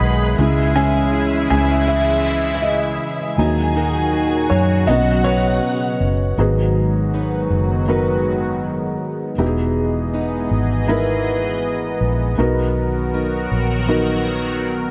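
This pop ballad fragment feels heartfelt and tender, unfolding at an unhurried pace in a straight four-beat feel. A felt-muted upright piano carries the accompaniment throughout, its soft, mellow tone made intimate by audible action noise, and it takes a featured turn during the opening 6.4 seconds. A fingerpicked, plugged-in steel-string acoustic guitar weaves full-bodied jumbo arpeggios throughout, while a sweeping, resonant pad of detuned sawtooth chords sustains the harmony with a slow attack, filter swell, long release and a shimmer of chorus. A dark studio violin section adds a woody, vibrato-rich second line until 6.4 seconds, and a foam-muted fingered electric bass sits up front with a round, punchy vintage sound. A lush hall reverb opens up the space as the harmony moves from C#m through G#m7 and Emaj7 to settle on Bmaj7.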